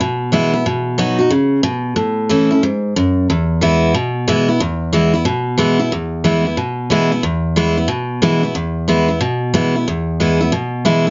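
A picked steel-string acoustic guitar opens this short rock fragment alone, its dreadnought tone bright, full-bodied and placed up front. The mood is upbeat and rollicking, driven by a fast 182 BPM in 4/4 with a swung eighth-note feel. In E major, the guitar ranges from E2 up to F#4, moving through E, B and A before returning to E by 3.3 seconds. One section gives way to another at 5.9 seconds, and the playing runs to 11.1 seconds as a piece cut from a longer performance. A moderate small-room reverb adds a touch of space, while the top end is gently capped and the tuning sits slightly below standard pitch at A4 = 437 Hz.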